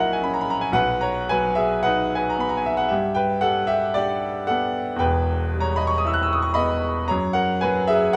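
A clear, vintage-toned grand piano sits up front in this brief, serene and nostalgic fragment of a romantic classical nocturne, its long sustain ringing into a large studio reverb with a 1.3-second decay. Played with rubato in 4/4 at roughly 54-59 BPM and tuned to A4 = 439 Hz, the solo piano spans from E1 to F#6, moving through F#7/A#, B, G, Em and back to F#7 over 8.2 seconds before the passage is cut from the longer piece.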